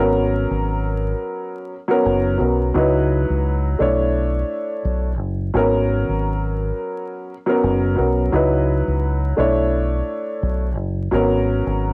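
Crackling vinyl and the character of a home cassette recording, with light reverb, frame this reflective yet tough hip hop fragment, which rides a gently swung 16th-note groove. Up front, a dark upright piano with woody, intimate tone and audible action noise plays mellow, vintage-sounding chords through the tape and filtering, cycling G#m11, C#m11 and Bm11. Beneath it, a deep dub fingered electric bass sits just as close, its round, direct, amped low end anchoring the harmony for the full 11.9 seconds.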